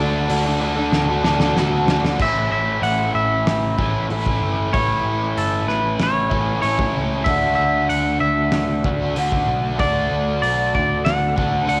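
Opening on a biting, double-tracked overdriven guitar riff drenched in lush chorus beneath a bright, twangy clean lead melody carrying cassette tape grit and analog delay, with a round, foam-muted picked bass underneath, this blissful, hazy shoegaze and dream pop rock excerpt brings in a loose indie drum kit with a fat snare, punchy kick and dark cymbals at 0.3 seconds, rolling through a fill from 0.9 to 2.2 seconds, set in light small-room reverb with the lo-fi feel of a home cassette recording.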